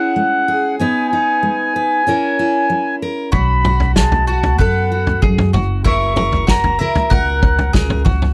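A reedy, mid-forward accordion melody sits up front over a bright, jumbo fingerpicked steel-string acoustic guitar with audible finger squeak as this anthemic, warm indie folk excerpt opens at 95 BPM in straight 4/4 on C#m; at 3.3 seconds the arrangement builds as round, double-string mandolin arpeggios, a woody, thumpy pizzicato upright bass on gut strings and a punchy, natural country drum kit playing a fill in a small room join in, before a soft-malleted glockenspiel rings bell-like in the background at 7.1 seconds, the whole captured in a dry, close 1970s-style studio sound.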